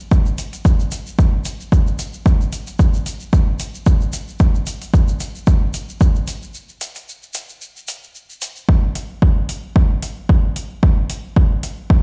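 An overdriven deep kick drum sits up front in this hypnotic, hazy techno excerpt at 112 BPM with a swung 16th feel, alongside metallic, overdriven electronic hi-hats and a grainy, bright egg shaker that plays until 8.7 seconds, all heard as if through a big sound system in a bare stone room, with a break from 6.5 to 8.7 seconds.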